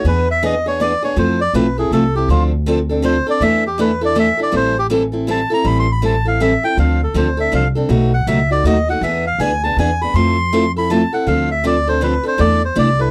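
A reedy, breathy melodica leads this swinging, bittersweet slice of acoustic string swing, taking a solo from the first second to the last over a picked parlour-style steel-string guitar and a plucked upright bass. At 160 BPM in a swung 3/4, the music sits in A minor and moves through a bittersweet cycle of chords such as E7, Fmaj7, Dm7 and Am7, with a B7 appearing near 7.9 seconds before the progression returns. The melodica has a nasal, slightly plastic character and a boxy small-room quality, while the guitar sounds bright with fresh strings. The upright bass, with gut strings, is woody, dark and thumpy. All three parts sit up front in a dry, close recording with a 1970s studio flavour and little reverb, and the passage is cut from a longer piece.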